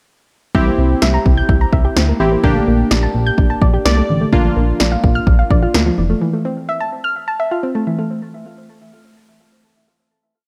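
Keys, pluck, bass and drums all start together at 0.5 s in this wistful, upbeat synth-pop piece in F major at 127 BPM, where a punchy, overdriven deep house kit drives a straight drum-machine beat under a glossy, dark chorused synth bass pulsing in eighth notes, warm analog keys holding detuned sawtooth triads with a short fill at 3.6 s, and a soft, round pluck running sixteenth-note arpeggios through chorus and tape echo that rings on alone until 8.1 s over chords moving from C7 through Bb to Fmaj7, all in light reverb.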